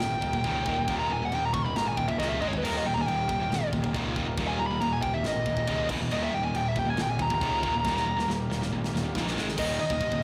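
Aggressive and dark, this heavy metal excerpt in Eb major drives at 138 BPM in a straight 4/4, cut from a longer piece. A dark, smooth lead guitar with overdrive sits up front and solos through to 9.6 seconds, carried over two high-gain distorted guitars playing bright, picked riffs in the background. A growly fuzz bass, direct and amped with overdrive, anchors the low end, while a soft, shimmering pipe organ on string and celeste stops holds sustained chords in a romantic voicing behind the band. The tight metal drum kit, mid-forward with a medium-tuned snare and tight kick, adds china and crash cymbals and toms, with fills at 2.2 seconds and from 7.8 to 9.6 seconds. The harmony stays rooted on Eb with brief moves to Ab5 and E5 power chords, and a moderate church reverb spreads over the rough rehearsal-room sound and its saturated character.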